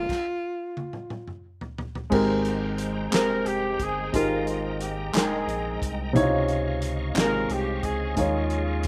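A breathy alto saxophone with slapback echo opens this hopeful, soulful slow gospel excerpt in 6/8 at 59 BPM in Ab major, stepping away at 1.4 seconds, while a dark, mellow grand piano, a reedy tonewheel organ on fast rotary speaker with key click, and a round sine sub bass hold the ground and a soul drum kit with a fat snare and dark cymbals plays a fill through the opening stop. At 3.1 seconds a tight, vintage horn section takes up the melody, joined by crisp, distant group handclaps that drop out at 7.5 seconds. The chords move from Abmaj9 through Abmaj13 and Dbmaj9 to Eb9sus4, in a dry mix.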